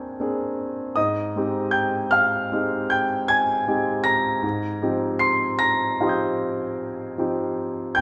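In a rubato 9/8 at 52 dotted-quarter beats per minute, this short cut from a longer impressionist classical solo piano piece feels hazy and luminous, with a concert grand placed up front, its tone open and its bass deep, moving from Bb13 over Eb to Abmaj7 at 1.0 seconds across a span of F2 to C7, tuned to A4 = 441 Hz and set in a moderate concert hall reverb of 2.0 seconds.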